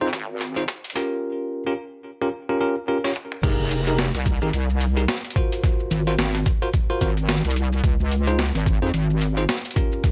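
Bell-like, bright electric piano stabs open this swaggering, playful glitch hop excerpt at 109 BPM with a 16th-note swing, riding a low-pass filter sweep, sidechain pumping and digital delay over a heavy, detuned wobble bass, while a gritty, overdriven sampler-style kit with a high-tuned snare and a thumpy, pitched-down kick throws in fills at the start and close of the build-up. At 3.4 seconds the drop lands, moving through Fm11 and Ab13 and back to Db, with the chorused square-and-sine wobble bass, gritty drums and clean piano stabs all up front in a dry mix. The bass drops out at 9.5 seconds as the piano and drums carry on to the cut.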